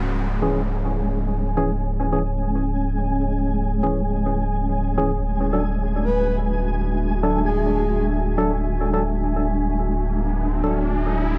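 Dark and cavernous, this dubstep excerpt moves at 141 BPM in a half-time feel with swung 16ths, as a deep, saturated sub bass holds up front beneath a blurred, evolving granular cloud pad and a flickering grainy texture, both bathed in their own reverb, over chords shifting from C#m to D. Hollow, organ-like percussive stabs with chorus and analog delay run from 0.4 s under a filter sweep, while a breathy, flute-like synth lead with vibrato and dub echo surfaces between 6.0 and 8.0 s. A downlifter opens the passage and a riser builds from 9.6 s, all set in an echo-heavy mix with light digital ambience.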